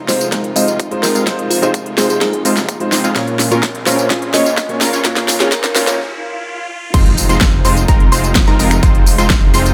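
Festival progressive house at 127 BPM in F minor, this powerful, anthemic excerpt builds for about 6.9 seconds before dropping. A punchy, tape-tinged electronic kick and a layered pop drum kit with a fat snare, crisp hats, snaps, tambourine and crash drive the groove, with a drum fill running through most of the build-up. Over a very quiet, thick detuned saw bass and faint bowed strings with vibrato, a punchy supersaw stab plays a riff that pumps and echoes as a filter sweeps across it, while a sparkling, bell-like FM electric piano carries the melody and a dark, mellow baby grand piano supplies pumping accompaniment until 6.0 seconds. After a brief break and swell, the drop arrives at 6.9 seconds with an impact and a bright, wave-folded unison pluck arpeggiating in the background. The harmony moves from Fm7 to Bbm and back to Fm7, all set in a light reverb.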